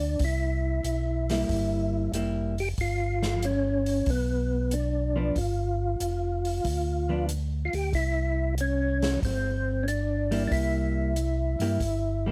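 This greasy, soulful soul jazz organ trio opens with a tonewheel organ melody, round and percussive with key click, chorus vibrato and a slow rotary speaker, over a second organ carrying the bass in a mellow, lightly overdriven voice from a stationary speaker. Both organs sit up front. A swinging big-band drum kit plays along at 93 BPM in 4/4, its hi-hat, medium-tuned snare and punchy kick sounding acoustic, airy and polished in a hall. At 1.3 seconds a vintage hollow-body electric jazz guitar joins as accompaniment, picked, compressed and dark-toned. The harmony moves from C7 to G7 at 2.8 seconds and back to C7 at 7.9 seconds, with an easy swing on the eighth notes and a touch of light reverb across this short excerpt.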